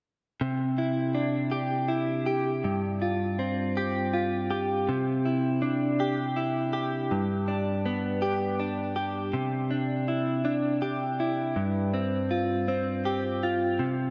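Tender and romantic, this pop excerpt drifts along at 54 BPM in dotted quarters, a straight 6/8 in C major tuned to A4 = 441 Hz. A lone clean electric guitar, picked, scooped and compressed, sits up front from 0.4 s, moving through Cadd9, G7sus4 and G between G2 and G4 with subtle chorus and a diffuse ambient delay. A lush hall reverb with a 2.8-second tail soaks the dreamy mix, and a new passage begins at 9.3 s before the guitar stops at 14.1 s.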